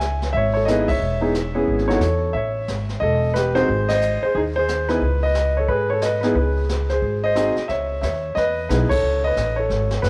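Moody and swinging, this jazz piano trio fragment puts a smooth, vintage grand piano melody up front over a woody, growly pizzicato upright bass, while a distant, roomy brush kit with dark cymbals, a high-tuned snare and a boomy kick sits farther back; the piano and drums carry a cassette-tape tint, the trio sits in a moderate, lush hall reverb, and the band hits accents at 0.8, 3.8 and 8.9 seconds.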